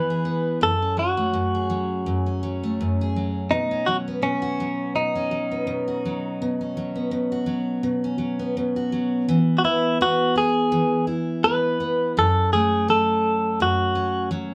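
Easy-going and carefree, this pop excerpt at 83 BPM in E major with a light sixteenth-note swing pairs a clean, compressed direct-recorded electric guitar carrying the melody between C#4 and B4 with a full-bodied, jumbo picked steel-string acoustic guitar accompanying from F#2 to G#4, both up front in a small room's moderate reverb, moving from E through F#madd9 and Badd9 before a new section at 9.3 seconds returns to E and F#m.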